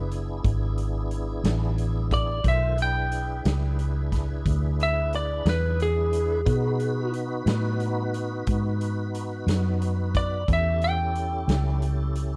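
Slow blues at 60 BPM in a straight 12/8 feel, this gritty, laid-back excerpt in E mixolydian moves from E7 to B7 at 6.5 seconds and A7 at 10.5 seconds, with a slightly broken-up, compressed lead guitar carrying the melody up front, a round, foam-muted fingered electric bass, a saturated garage drum kit of hi-hat, punchy kick and medium-tuned snare, and a full, clean tonewheel organ holding sustained chords through chorus vibrato and a slow rotary speaker, in a dry, close 1970s-style studio sound.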